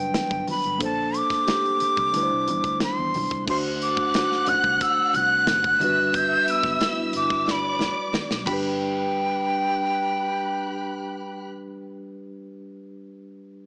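A breathy, bright jazz flute with a crisp, chiffy attack leads up front in this short excerpt of lush 1970s-style soul at 90 BPM in G major, smooth and warm in mood, over a mellow tine electric piano, a dark, foam-muted fingered bass in the background, a polished studio drum kit with bright cymbals and punchy kick, and very quiet, soft-handed congas. A vibraphone with hard mallets rings in the background from 1.4 seconds, and a distant, expressive violin section with rich vibrato joins at 3.5 seconds. The drums play a fill from 7.5 seconds and stop at 8.6 seconds, while the electric piano carries on alone after the others end at 11.5 seconds, all heard through a small-speaker sound with light reverb.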